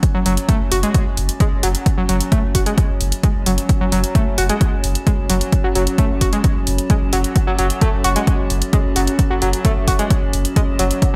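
A straight 4/4 pulse at 131 BPM drives this intense, relentless peak-time techno excerpt, built on a punchy, up-front overdriven kick, an overdriven analog hi-hat and a deep, saturated sub bass held on F#1 with low-pass filtering and sidechain pumping. A screaming, guitar-like sawtooth lead carries the riff between F#3 and F#4 with vibrato, distortion and digital delay, while an eerie, wave-folded FM drone hovers alongside with slow attack, chorus and its own reverb, pumping in time. The whole mix sits in a lush hall reverb with a bright 1980s-style digital sheen, over an F#5 chord.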